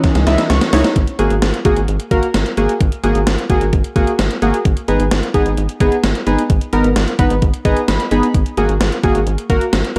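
Synth-pop with a driving, nocturnal mood, cut from a longer piece in a straight four-beat pulse. A shimmering, retro pulse-width pad holds mellow chorused chords in the background only at the very start, ending by 0.9 s, while the gated 80s drum machine opens with a fill of thumpy kick, hi-hat and a gated-reverb snare that sounds tape-warm and up front. A rubbery, hollow square bass enters almost at once, bouncy and saturated with a dark, resonant filter pluck. Round analog keys with chorus and a filter sweep carry the accompaniment up front, adding short fills at the opening and again at 7.4 s. The harmony moves from C#madd9 through F#add9/G# and G#m, all set in a moderate recital-hall reverb.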